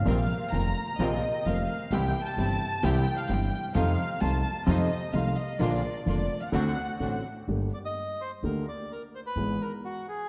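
A warm, up-front grand piano and a pizzicato upright bass open this passionate, melancholic tango fragment in Bb major at 129 BPM with a rubato feel, as a dark, bowed violin section takes the featured line with vibrato above distant, gut-toned chamber strings playing short stabs. The chords drift from Bbsus2 through C, F7 and D7 into Gmadd9, and at 7.7 seconds a reedy, airy bandoneon steps forward with the melody after the violins fall away. The whole production sits in a lush scoring-stage reverb, giving the ensemble a soft, enveloping glow.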